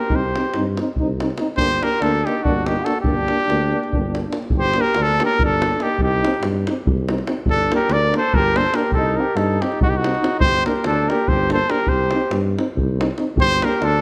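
Driven by a straight 7/8 pulse counted in eighths at 285 BPM, this Balkan brass band piece moves with a quick, bittersweet urgency in G harmonic minor. Up front, a warm trumpet carries the melody with light vibrato and a slapback echo, while a distant, roomy flugelhorn with its own vibrato shadows it on a second line in a more mellow voice. Behind them, a clear French horn and a vintage-toned euphonium hold the accompaniment in the background, and a tuba with a soft attack and smooth top anchors the bass from G1 to G2. A deep, acoustic davul, recorded with a live-room feel, pushes the odd meter along under the brass, all heard through a moderate concert-hall reverb. Cut from a longer piece, the passage states its main section and restarts it at 4.5 seconds, alternating between Cm and Gm throughout, with a virtuosic, classical polish to the horn playing until it ends at 14.0 seconds.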